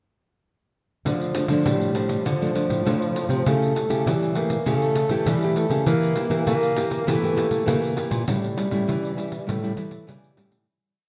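The recording sits in a moderate recital hall reverb, giving this short samba and choro piece a softly rounded space, while the pandeiro stays close and dry with a jingly, acoustic bite. Two nylon-string guitars play classical-style: one supplies the samba accompaniment of thumb bass and syncopated plucked chords, and the other carries a thumb-plucked samba bass figure, its finger squeaks audible against a warm tone. Alongside them a breathy tenor saxophone plays a dark, whispered second line in its low register, using subtone, vibrato, a soft attack and scooped notes in an intimate jazz style. The harmony moves from Dm through A7/C# and Edim to A7, setting a nostalgic, yearning mood over a straight groove. All four parts play together from 1.1 seconds, and the piece fades out from 8.3 seconds to its close.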